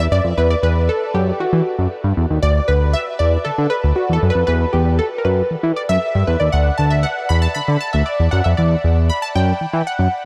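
A fat, detuned sawtooth analog bass and a punchy, nasal polysynth comp with chorus and a plucky filter both sound from the first moment, setting a feel-good, smooth early-eighties boogie funk groove at 117 BPM in 4/4 that moves between Emadd9 and Dadd9 chords, with the bass up front and its filter sweeping, all soaked in a huge ambient reverb that gives this short cut a dreamy haze.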